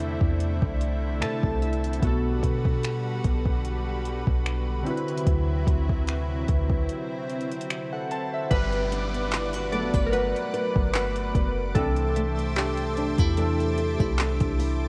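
Contemporary R&B with a smooth, romantic mood, built on mellow, detuned analog keys with chorus and phaser that carry a fill near 0.8 seconds and take a solo from 8.5 seconds. They sit over a lush, bright unison pad, a deep, round 808-style bass and a soft, overdriven drum kit of finger snaps, handclaps, hi-hat and kick. After a break from 6.9 to 8.5 seconds, a boxy, fingerpicked flamenco guitar with audible finger squeak plays arpeggios alongside a faint downlifter, all steeped in the worn, warbling pitch drift of old cassette tape.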